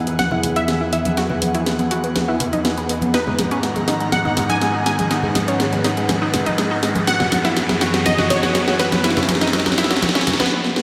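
Progressive house at 122 BPM in G# minor, this dreamy, driving build-up is cut from a longer piece and moves from Eadd9 to G#m7 to F#7sus4, with a bright, punchy unison pluck carrying the melody through phaser and delay while a round, warbling analog pluck spins arpeggios under a filter sweep. An airy, breathy pad holds sustained chords with chorus, and a riser and ringing congas sit in the background. Up front, a tape-warm house kit with a cracking snare and hi-hat plays a drum fill, everything is soaked in lush hall reverb, and the music stops at 10.5 seconds.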